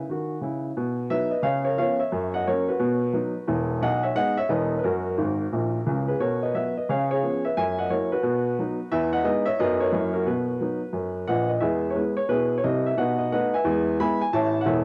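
A lush hall reverb surrounds a woody, polished upright piano, heard up front with cassette-tape character in this home recording, cut from a longer piece and tuned to A4 = 436 Hz. The piano alone carries an exuberant, playful stride jazz tune at 177 BPM in 4/4 with a swung eighth-note feel, moving through B major changes such as C#7, F#7 and Emaj7 and adding a brief fill at 5.2 seconds. At 11.6 seconds it shifts to E major, cycling through E and B7 before reaching A as the passage breaks off.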